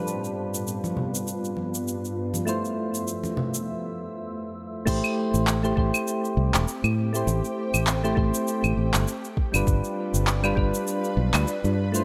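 Gentle, mellow electric-piano-like synth keys with chorus, tremolo and digital delay carry this smooth, wistful sunset chillout excerpt in A minor at 100 BPM, with swung 16ths, over a shimmering, ethereal pad with octave-up shimmer and built-in reverb. A tape-warm, produced R&B kit of claves, crash cymbal, handclaps and shaker sits up front, while distant congas in a large room enter at 0.8 s and drop out ahead of a brief break at 3.7 s. At 4.9 s a dark, round fingered electric bass and a soft electronic kick come in as the harmony moves from G7 and Fmaj7 to Am7, framed by light reverb and digital ambience.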